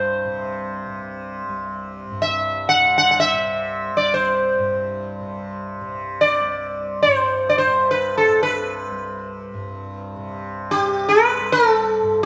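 A moderate stone-room reverb, lasting about 1.4 seconds, gives this live recording a natural sense of space, as if the two players share one resonant hall. It is a short, free-time Hindustani classical passage in raga yaman on C, cut from a longer piece, and its mood is radiant and serene. The acoustic sitar sits up front and carries the melody between G4 and F#5, its plectrum-plucked tone round and buzzing, with sympathetic strings shimmering around it. Further back and much softer, the acoustic tanpura holds a softly plucked drone from C2 to C3, its warm, shimmering resonance filling the room. Both instruments sound together from 0.0 to 12.3 seconds in a single section.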